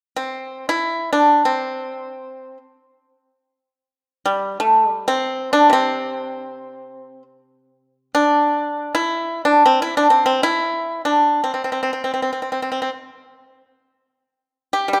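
A solo pipa enters at 0.2 seconds and carries this brief fragment of a longer Chinese traditional piece alone to its close at 15.0 seconds. The mood is elegant and serene, and the music moves in free time, unbound by a steady beat, within the C gong mode. Played with fingerpicks, the acoustic pipa has a dry, percussive attack, and it sits up front in the mix. Its range spans C3 to G4. A light reverb lends the room a gentle sense of space around the instrument's warm sound.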